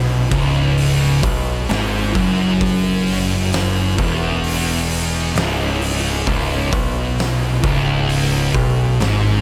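An oversized, low-tuned acoustic drum kit sits up front in a bright stone room, its punchy kick, fat snare and hi-hat sounding saturated and gritty as it enters at 0.3 seconds. Beneath it, two dark, picked fuzz guitars grind out a distorted riff in the background, while a growling picked electric bass adds a bright, overdriven edge down low. This heavy, sludgy stretch of stoner and doom metal rests on a single C# minor chord and is cut from a longer piece, with light studio reverb around it.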